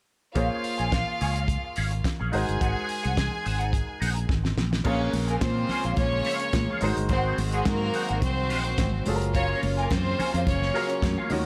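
Disco in Bb minor at 107 BPM, danceable and driving, this clip is cut from a longer piece, built on a tight, fat-snared soul drum kit with dark cymbals and a round, dark fingered electric bass up front, while a clean, picked electric guitar with wah and ensemble chorus and a clear, present grand piano fill in the accompaniment over Bbm7 and Ab7. A biting, intense violin section with light vibrato carries the second line from the start, and after a drum fill and a brief break in the harmony at 4.6 seconds, a reedy, gut-string chamber string section and high-tuned, thick-skinned congas join in the background at 4.9 seconds. The closing stretch moves to Gbmaj7 at 9.1 seconds, all set in a small room ambience.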